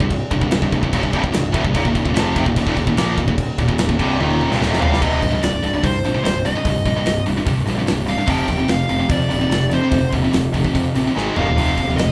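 Heavy metal in C minor at 147 BPM, this aggressive, heavy passage is cut from a longer piece and sounds like a band playing live in one room with moderate studio reverb. Two distorted, picked electric guitars drive the riff from the start, one high-gain and up front, the other tighter and set in the background, while a growly, fuzz-laden picked bass rides underneath. An acoustic drum kit sits up front with a tight kick, a medium-tuned snare, hi-hat, crash and toms, and it marks the turn into the second section with a fill that ends at 5.0 seconds. At 4.8 seconds a dark, smooth overdriven lead guitar enters high above the riff and carries the melody to the end. The harmony moves from C minor through Eb and F power chords, with a quick push through Ab, Eb and F around a second drum fill near the close.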